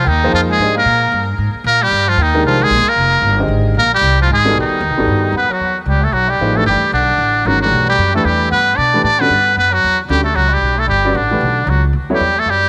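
Swung eighth notes drive this modal jazz fragment in 4/4, a brisk, spiritual and hypnotic groove that sounds lifted from a longer piece. The trumpet, fitted with a metal mute, carries the melody up front, its buzzy, thin tone brilliant and breathy, shaded with light vibrato and trailed by tape echo. Beneath it a clear, vintage-sounding bass clarinet with its own vibrato traces a second line, while the pizzicato upright bass gives a woody, growly foundation on steel strings. A warm baby grand piano supplies natural-sounding accompaniment from 0.2 s until 12.2 s, moving from Fm11 and B7b13 into Em9 and G as the harmony shifts at 5.6 s. Light studio reverb surrounds the group.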